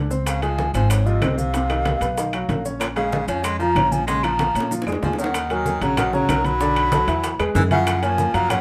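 A straight 4/4 groove at 189 BPM drives this sultry, sophisticated Afro-Cuban jazz excerpt. Low-tuned, damped congas, tight high-tuned bongos and woody claves sit in the background alongside ringing metal-shell timbales and grainy maracas, while a steel-strung pizzicato upright bass is placed up front. An airy concert flute with vibrato carries the melody from 0.3 s, while an edgy, forceful baritone saxophone with scooped notes plays a second line and a clear, intimate upright piano with audible action noise supplies the accompaniment. After a drum fill from 4.4 s, the key moves from Bb minor to Eb minor at 5.3 s, with the band heard in a moderate club reverb.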